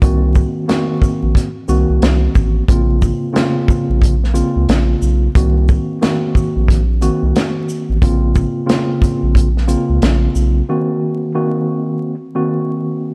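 A swung sixteenth-note groove in common time drives this dark, tough boom-bap hip-hop passage, cut from a longer piece. The soul drum kit sits up front yet sounds distant and roomy, with a tight kick, a medium-tuned snare, hi-hat and shaker, all carrying a rolled-off top. Beneath it, a round analog bass with a deep, sine-like tone and fast attack holds sustained low notes, while a mellow tine electric piano plays clean accompanying chords, its sound run through cassette tape and trimmed by high- and low-pass filters. The harmony moves between half-diminished and minor add-nine colours, and after the drums drop out at 10.5 seconds and the bass at 10.6 seconds, the electric piano carries the break on its own until 13.1 seconds. Light reverb, a small-room ambience and vinyl crackle give the production a dark, warm finish.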